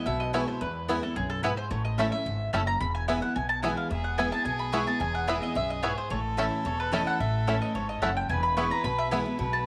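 Virtuosic and joyful, this short cut of straight-feel bluegrass puts a round, up-front mandolin on the melody beside a twangy, fingerpicked banjo carrying its own slapback echo, over a full-bodied picked dreadnought guitar and a growly, thumpy pizzicato upright bass. A second, woody mandolin adds stabs from the background, and at 3.9 s a distant, biting fiddle enters with a second line touched by light vibrato. The whole band sits in a moderate plate reverb.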